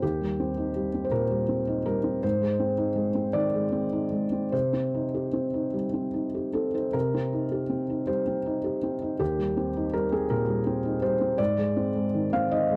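A soft, felt-muted upright piano plays alone in C minor, its mellow tone close and up front with audible action noise, drifting rubato in a slow 6/8 at about 49-56 BPM through a repeated passage over Eb6, Ab and Cm chords, lending this intimate, melancholic neoclassical minimalist excerpt a dry, close 1970s-style studio sound touched by light reverb.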